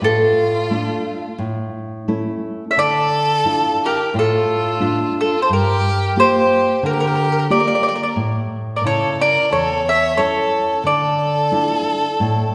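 A mellow, round mandolin with picked double strings carries the melody up front in this romantic, lively Italian folk serenade, cut from a longer piece with a gentle swing. A clear, focused solo violin with vibrato bows a second line beneath it, while a full-bodied nylon-string guitar fingerpicks a deep classical accompaniment, its finger squeaks audible, moving from D minor colors through G minor seventh and A chords. All three play throughout the 12.5 seconds, bathed in the lush reverb of a church or concert hall.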